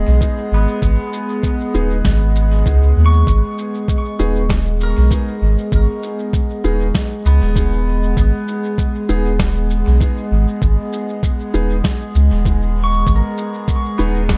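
Ambient dub at 98 BPM in G# minor, this hazy, spacious excerpt rests on a single G# minor chord, with a light swing to its sixteenths. A warbling, nostalgic pad of detuned square and triangle waves holds sustained chords through chorus and its own reverb, its lo-fi tone dark and touched by ring modulation. Underneath, a deep, round sub bass sits up front, while a muffled, thumpy electronic kick and a pitched-down shaker and snare, the latter trailed by dub echo, enter at 0.2 seconds with a sampler-style, small-room character. A clean electric pedal steel guitar, played with fingerpicks and slide, joins at 0.5 seconds with arpeggios and volume swells that drift into dub echo. From 1.7 seconds a woody upright piano adds natural stabs roughened by vintage 12-bit sampler grit and echo, all set within a digital ambience.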